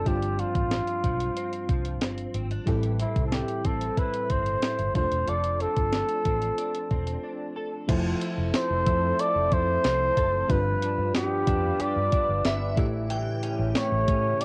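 Uplifting and glossy, this 1980s-style pop excerpt moves at 92 BPM in a straight 4/4, cut from a longer piece and captured as a home recording on cassette with moderate booth ambience. A mellow flugelhorn carries the melody up front, its smooth top and vibrato coated in cassette tape grit and plate reverb. A glassy FM electric piano with bell-like attack and chorus supplies the accompaniment, and a direct-recorded clean electric guitar plays a compressed, picked riff through ensemble chorus. Underneath, a dark, foam-muted fingered bass sits round and punchy against a clean 12-bit drum machine whose thumpy kick, medium-tuned snare, hi-hat, tambourine and crash sound tape-warm and sampler-like. After a short break at 7.2 seconds, the harmony shifts from G7sus4, Am7 and F6 toward Fmaj7, G7 and A7, as a thick, detuned sawtooth pad enters in the background at 8.5 seconds. Near the close, a shimmering, dreamy FM bell adds a brief second line at 12.5 seconds, haloed by tape echo, ensemble chorus and plate reverb.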